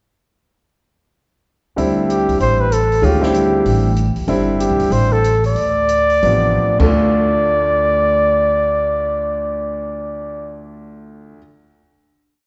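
Spiritual and cool, this short modal jazz piece in swung 4/4 sets a mellow, scooped trumpet with light vibrato playing a motif-based solo melody over clear grand piano comping in syncopated quartal voicings, woody pizzicato upright bass in a two-feel, and an open jazz kit keeping time on dark hi-hat, slowing from 4.3 seconds into a drum fill before a final hit at 6.9 seconds, all bathed in a wet concert hall reverb with a soft, dulled top.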